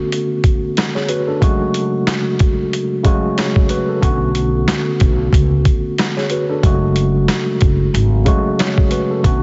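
A worn, slightly out-of-tune tine electric piano, lightly overdriven with a cassette-tape haze, sits up front moving between Bm9 and F#madd9 over a gritty, pitched-down, sampler-style boom-bap kit with a thumpy kick and high-tuned snare, joined at 4.0 s by a woody, dark pizzicato upright bass, giving this tough, moody hip-hop excerpt a dry, heavily compressed radio sound dusted with vinyl crackle.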